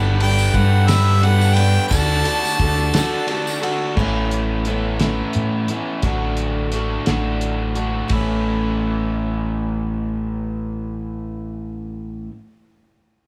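Rolling in a straight 6/8 at 58 BPM, this hopeful folk rock and heartland rock passage in A mixolydian, cut from a longer piece, sets a warm picked steel-string acoustic guitar and a crunchy, double-tracked overdriven guitar riff over a round, up-front fingered electric bass, while a bright harmonica with scooped notes and light vibrato carries the melody until 3.6 seconds above a reedy, breathing harmonium holding chords in the background until 4.0 seconds, a jingly tambourine, and a dry, cloth-damped drum kit with a fat snare and dark cymbals that plays until 8.3 seconds, in a small room with little reverb.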